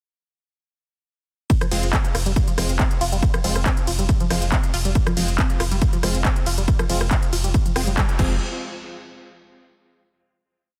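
Driving and intense, this short peak-time techno piece runs at 139 BPM in a straight 4/4 and sits on an F minor chord. At 1.5 seconds the drop arrives with an overdriven, up-front four-on-the-floor electronic kick, joined by a programmed kit of smooth closed and open hats, ride, rim click, handclaps on the backbeat and crash, its hats and cymbals pumping against the kick. A deep, thick saturated sub bass holds F1 as a low rumble between the kicks through a low-pass filter. A tight sequenced synth repeats an eight-step pattern between F3 and F4, its mellow, detuned sawtooth and triangle tone treated with chorus, phaser, tube saturation and dub echo. Punchy supersaw chord stabs land in syncopation, one shape moved in parallel with a moving notch and tape echo. After a band accent at 8.0 seconds, a final hit rings out to 10.1 seconds in light digital ambience, capping a dense, heavily limited modern master.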